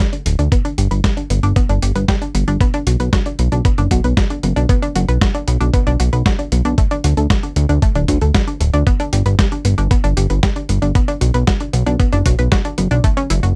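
Italo disco in B minor at 115 BPM, this melodramatic, bittersweet excerpt from a longer piece moves through G, B minor and D chords over a straight 4/4 pulse, ending on F#m7. A fat, detuned sawtooth bass with a filter sweep enters at 0.3 seconds and sits up front beside a thumpy, overdriven electronic kick, while a gritty, sampler-style soul kit adds hi-hat and a medium-tuned snare. Above them, a round analog pluck with a sub octave plays arpeggios through chorus and tape echo, all captured in a dry, close 1970s-style studio sound.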